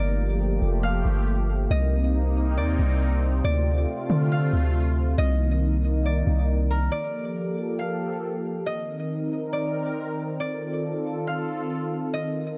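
A half-time 4/4 pulse carries this ethereal, spacious stretch of atmospheric cloud-rap, cut from a longer piece. A long sustained 808-style bass sits up front for the first 6.9 seconds, deep and mellow with a sine tone, fast attack and long decay, before it drops away. Throughout, a sweeping resonant pad holds sustained chords, its detuned sawtooth and sine layers evolving through a slow attack and filter swell, thickened by chorus and also placed up front. Above it, a concert harp carries the melody with an acoustic, fingerpicked, ringing tone, softened by a low-pass filter and trailed by delay. The harmony circles through Gm9, Cm9 and Dm7, with the whole set in light reverb and a small room ambience.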